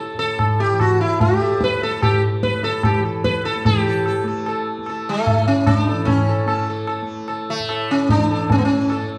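A sitar and tanpura open this serene, meditative Hindustani classical excerpt in A raga khamaj at 148 BPM in 3/4, the up-front sitar carrying a round, shimmering, plectrum-plucked melody with buzzing sympathetic strings over the softly plucked tanpura's warm drone, and from 0.2 s a high-tuned, close and dry tabla adds short-ringing strokes, all within a recital-hall reverb touched by a small room before the music moves into a new section at 3.7 s.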